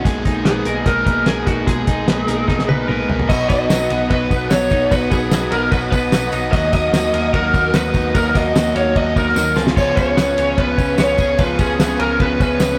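Jangly indie pop at 148 BPM in B major, youthful and breezy, cut from a longer piece: a crunchy overdriven rhythm guitar and a bright, twangy twelve-string playing arpeggios in the background open over a dark, round, foam-muted dub bass and a cloth-damped, thuddy drum kit with a fat snare and dark cymbals. An up-front, lo-fi lead guitar through a small cranked amp carries the melody from 0.5 seconds, and during a drum fill a mellow glockenspiel with soft plastic mallets adds a second line, while at 3.3 seconds a very quiet studio string section enters with sustained, expressive chords full of vibrato and portamento, alongside a jingly tambourine. The chords move from G#madd9/B through B and D#m to C#7, and the rough rehearsal-room sound carries tube saturation and a moderate stone-room reverb.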